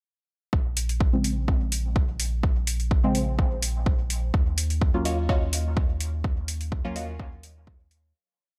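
A steady four-on-the-floor kick at 126 BPM in straight 4/4 drives this short, cavernous and hazy dub techno piece in Bb minor, with the groove beginning at 0.5 seconds. The kick is deep and overdriven, sitting up front with the sense of a large room around it, while programmed metallic hi-hats, also overdriven and roomy, mark the backbeat above it. Underneath, a round sine sub bass holds sustained root notes, pumping against the kick. Sparse, full-bodied chord stabs, soft and dark through chorus, phaser, a filter sweep and dub echo, move one detuned shape in parallel from Bbm9 to Ebm9. At 5.1 seconds a crisp, wave-folded wavetable stab joins higher up, bright with a moving notch, a cassette-tape color and its own echoes. A fade-out begins at 5.6 seconds, all under a light reverb.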